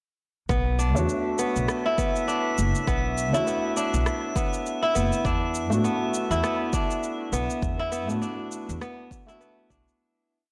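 A blown-out, overdriven recording set in a moderate stage reverb carries this hypnotic, meditative organic downtempo piece, where a crisp, ringing kora repeats a 10-step loop drifting against the bar with tape echo over a woody pizzicato upright bass riff, a deep, soft electronic kick, a layered electronic shaker and rim click, sparse rootless stabs from a dark, felt-muted upright piano with audible action noise, and a glassy high note held by a drifting glass-harmonics texture from 1.2 seconds, all within a fade-out from 6.8 to 10.0 seconds.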